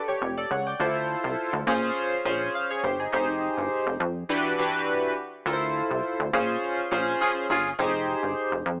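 A glossy, chorused polysynth anchors the accompaniment in this slick funk excerpt at 103 BPM in straight 4/4, its retro pulse-wave and sawtooth tones evolving through pulse-width modulation and a filter sweep as it sustains bright minor ninth chords, opening on a rootless Em9 before moving through Dm9, Bbm9 and Fm9. A punchy, plucky analog bass enters at 0.2 s, mixing sawtooth, square and triangle waves with a touch of ring modulation, each filtered note striking quickly and then decaying. The harmony cycles through the same chords again when a second section begins at 5.5 s, keeping the groove funky and polished. At 7.2 s a warm horn section adds a brief, distant ensemble line with light vibrato and a roomy, pop-style sound. Light reverb and an AM radio character tint the whole mix, giving it a nostalgic, slightly boxed-in feel.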